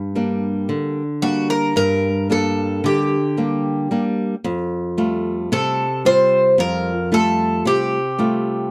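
In a straight 9/8 at 112 BPM (counted in eighths), this wistful, melancholic Greek folk excerpt in G harmonic minor opens with a bright, fingerpicked flamenco guitar playing accompaniment, joined at 1.2 seconds by a metallic, double-strung Greek bouzouki carrying the melody with some octave-doubled strings, both up front in a dry, close 1970s-style studio sound with light reverb, as the harmony moves from Gm to Fadd9 at 4.4 seconds.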